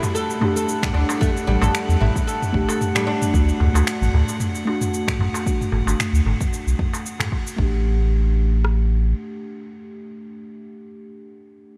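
Organic downtempo with a mystical, dreamy cast, this brief excerpt is soaked in a huge ambient reverb, with muted, felt-like synth keys warbling under chorus and diffuse delay while a woody, plectrum-plucked oud plays arpeggios until 3.3 seconds and a glassy harmonics texture drifts quietly in the background. Tape-warm deep house drums of cabasa, finger snaps and toms sit beside a crisp, metal-shelled darbuka struck with hard hands, and from 0.8 seconds a deep kick and rim click join as a round, up-front sine sub bass pumps beneath. The percussion and bass fall away by about 9.1 seconds, leaving the dark, decaying keys to carry the close over a suspended chord.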